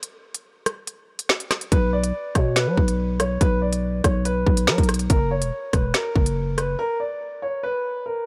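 Ominous and tense, this drill hip hop excerpt moves at 142 BPM with a half-time feel in B harmonic minor, opening on an electronic drum kit of finger snaps, crisp hats, rim clicks, a woody snare and a hard-clipped kick. At 1.7 seconds a dark, boxy concert grand piano enters with a mellow, long-sustained melody coloured by tape echo, joined by a growling, buzzy 808-style bass with a fast attack, as the harmony shifts from B minor to F sharp. The drums and bass drop out near 6.8 seconds, leaving the piano to ring on in a digital ambience.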